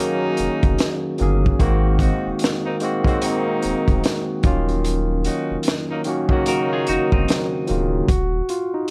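A barky tine electric piano sits up front, its bright, lightly overdriven tone pushed through a combo amp as it carries the chords in this short, sultry neo-soul excerpt. A crunchy breakbeat kit plays just as close, its punchy kick, high-tuned snare and hi-hat sounding gritty and dark with a rolled-off top, while the swung sixteenths give the groove a lazy, smooth R&B feel. Beneath them a deep, thick sub bass holds sustained sine-like notes with a saturated edge. A horn section adds warm ensemble stabs with light vibrato and a mellow top until 7.5 seconds. At 6.5 seconds a clean, picked semi-hollow electric guitar slips in with a brief second line, and the whole is set in a studio reverb as the harmony moves from Ebm7 to Ab9, returns to Ebm7 and settles on Ebmadd9 at 8.1 seconds.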